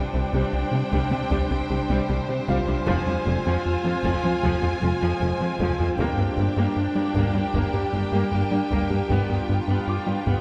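A moderate scoring-stage reverb gives this brief cut from a hybrid orchestral and electronic film score a vast, tense atmosphere at 77 BPM in G phrygian, moving through Csus2, Fm, Gm and G7. Lush bowed strings with vibrato carry it: a warm, expressive violin line over smooth, even violas, while very quiet, focused cellos and smooth double basses hold the low end. A bouncy, nasal square-wave bass riff sits beneath a tine-like, round synth pluck playing arpeggios with chorus and delay, an eerie metallic drone of ring-modulated chords in the background, a soft felt-muted upright piano adding intimate texture, and a very quiet, saturated taiko ensemble with heavy sticks entering at 0.9 seconds.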